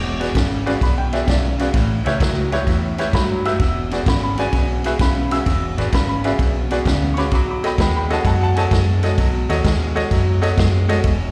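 A bright, woody upright piano with audible action noise, a slightly broken-up, lo-fi electric guitar riff through a small old amp, both carrying slapback echo, and a dark, round, foam-muted electric bass open this laid-back, rollicking electric blues shuffle fragment over E7, A7 and B7, with an up-front vintage drum kit of punchy kick, snare and ride joining at 0.2 seconds, all heard as a live gig through the venue's PA with recital hall reverb.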